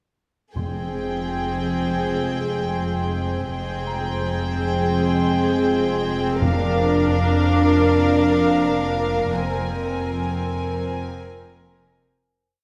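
Cinematic suspense film score in free time and F dorian, ominous and eerie, where a floating, sul tasto symphonic violin melody sits over a close chamber violin second line, distant viola accompaniment, cello and double bass holding F, dark French horn chords, a glassy, ethereal glass harmonica, a deep rumbling drone entering at 1.3 seconds, sparse bell-like celesta notes and single timpani strokes at 0.6 and 6.4 seconds, all moving from Fmadd9 through Bb/F to Abadd9/F in a wet recital hall before fading out from 9.3 seconds.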